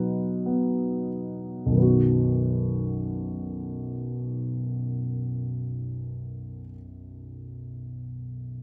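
Peaceful and calm, this short excerpt from a longer classical work presents a lyrical solo piano moving in a free, rubato four, its pulse slowing over the opening 1.8 seconds. A dark grand piano carries everything on its own from the start to 8.6 seconds, ranging from deep bass up into the middle register. Its tone is mellow and a little worn, with a boxy quality and long sustain that lets notes hang. Placed up front and captured by close, detailed microphones, the instrument sits in a moderate recital hall reverb that adds gentle space around each phrase. After a brief opening passage, a second section begins at 1.8 seconds and unfolds in the same quiet, reflective spirit.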